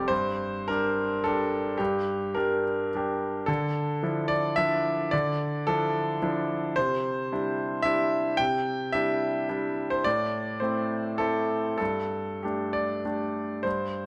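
A bright, intimate concert grand piano plays alone in this short neoclassical minimalist fragment, moving in a rubato three-four through Gm, Dmadd9, Cadd9 and Am to a final Gsus2, its deep bass, long sustain and audible action noise set up front in a moderate concert hall reverb that gives the reflective, wistful mood.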